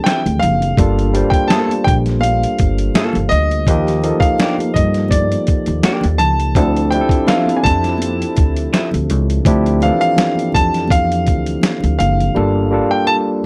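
Late-night and smooth, this short neo-soul and R&B piece moves with a gentle swing over a Dm9, Gm9 and Ebmaj7 progression. An intimate baby grand piano carries the melody up front, its short sustain and audible action noise giving it a natural, close feel. A barky, lightly overdriven tine electric piano plays the accompaniment through a combo amp, while an electric guitar through a small old amp adds a slightly broken-up, picked second line until 8.9 seconds. Underneath, a gritty, pitched-down boom bap sampler kit with a thumpy kick and medium-tuned snare sits beside a woody, dark pizzicato upright bass, and very quiet, bright high-tuned congas play softly in the back. From 7.3 to 9.4 seconds, a vintage detuned sawtooth pad with chorus warbles briefly in the background, all captured in a dry, close 1970s-style studio sound.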